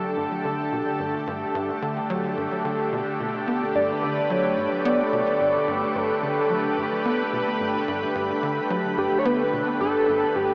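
Bathed in a wet shimmer reverb yet heard through a small-speaker tone, this cosmic, luminous excerpt of sequencer-driven ambient space music moves at 109 BPM in G major over a held Gsus2, where a lush, detuned unison pad with chorus sustains bright chords up front, a tight, punchy sequencer bass drives a saturated, dark, filter-plucked riff with tape echo, and from 3.8 s a retro, full-bodied pulse-width lead with vibrato, chorus and tape echo sings its melody.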